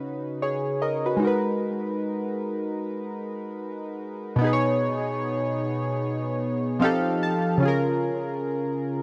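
Hip hop at 75 BPM with a 16th-note swing, this mellow, cosy snippet features solo analog keys, round and evolving pulse and sawtooth tones with a filter sweep, fast attack and decaying notes, sitting up front with chorus and cassette-tape colour in a lightly reverberant space, moving through chords like C#9sus4, G#m9 and B6, with a brief synth keys fill at 6.4 seconds.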